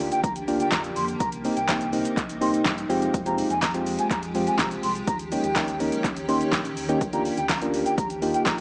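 This dry, gritty recording has a small-speaker character, with light digital ambience framing a confident, energetic dance-pop groove cut from a longer piece. Up front, an overdriven deep house kit drives things along with a punchy kick, fat snare, metallic hats, handclaps and shaker, while soft, round electric-piano-like synth keys warble through a chorus effect with a vintage, mellow tone. Beneath them, a granular cloud pad spreads blurred, evolving chords through its built-in reverb, and a deep sine sub bass with an added octave sits in the background. From 0.1 seconds a breathy concert flute carries the melody high above, expressive with vibrato and a crisp attack, its rolled-off highs trailed by tape echo. A very quiet, grainy tube shaker adds a bright acoustic edge, and sidechain pumping makes the keys, pad, bass and flute breathe with the beat as the chords move from Bb6/D through Cm7, Fmadd9 and Eb7, back to Bb6/D, before settling on Ebadd9.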